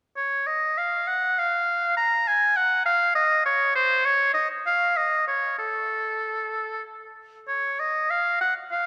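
Classical music in a baroque-style fantasia for unaccompanied oboe, this short passage, cut from a longer piece, carries a solemn, grave mood. The tempo sits around 93-103 BPM in 3/4, though the rubato feel lets the pulse breathe freely. A clear oboe plays alone and up front from 0.2 to 8.9 seconds, ranging from A4 to Bb5 with a light vibrato and a smooth top to its tone. Its phrasing follows a classical style. A wet church reverb with a long 3.4-second decay surrounds the instrument, lending the lone line a spacious, resonant halo.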